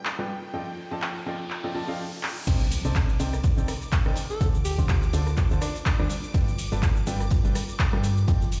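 Piano house at 124 BPM in C dorian, energetic and bittersweet, where a clear, woody upright piano riff with audible action noise and delay pumps under sidechain alongside a shimmering vintage string machine of violins in the background and a punchy analog drum machine of claps, hats, ride, shaker and crash, an electronic riser climbing from 0.3 seconds to a drum fill and the drop at 2.5 seconds, where a punchy up-front electronic kick, a round, dark FM bass and a very quiet dry soul drum kit join in, while a raspy, gritty alto saxophone with vibrato and delay sings a brief solo from 4.3 to 6.2 seconds over chords moving from Cm69 to Dm7 to G9, all heard in light reverb and a stone room ambience.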